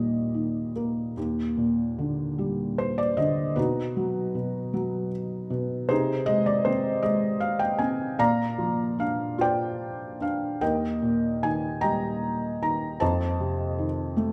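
A felt-muted upright piano carries this short classical fragment alone, its soft, mellow tone sitting up front and close, with the mechanical noise of its action clearly audible. The mood is calm and tender, a lyrical solo phrase in 6/8 played with free rubato, so the beats fall unevenly and the pulse seems to breathe. The piano spans from Eb2 up to Bb5, and the harmony drifts from Eb through Ebmaj7 to a surprising B chord before moving through Ab/C and Bbadd9, returning to Eb at 10.6 seconds and closing on F7 at 13.0 seconds. A moderate recital-hall reverb gives the intimate, natural sound a gentle sense of space. Cut from a longer piece, the recording lasts about 14 seconds and ends on that F7.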